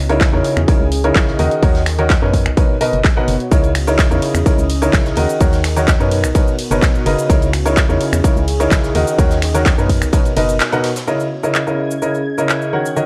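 A dry, gritty cassette-tape sound frames this soulful, energetic piano house, cut from a longer piece, with a clear, worn grand piano riff up front that carries tape echo and sidechain pumping over C#m69, D#m7 and Bmaj9 chords. A punchy, overdriven electronic kick and a layered house kit of finger snaps, handclaps, tape-warm hats, ride cymbal and shaker drive the groove, while a very quiet arena kit adds a fat snare and a hollow, organ-like FM bass pumps beneath until a band accent at 10.6 seconds. A warbling, nostalgic lo-fi pad with chorus and built-in reverb sits in the background, and at 11.1 seconds a silky, detuned string pad with ensemble chorus and phaser enters high above.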